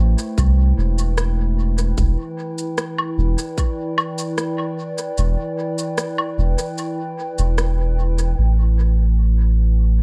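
Hazy and spacious, this ambient dub fragment in A minor drifts at 75 BPM in a straight 4/4, with a warbling, nostalgic tape-like pad holding chorused, reverb-tinged Am7 and Em7 chords over a deep, round sub bass thickened by tube saturation, while up-front electronic shaker, rim click and woodblock run through low-pass filters and dub echo, a tight electronic kick drum sounds only from 0.4 to 3.7 seconds, and a filter sweep on the pad at 8.4 seconds ushers in a new chord in an otherwise dry, echo-heavy mix.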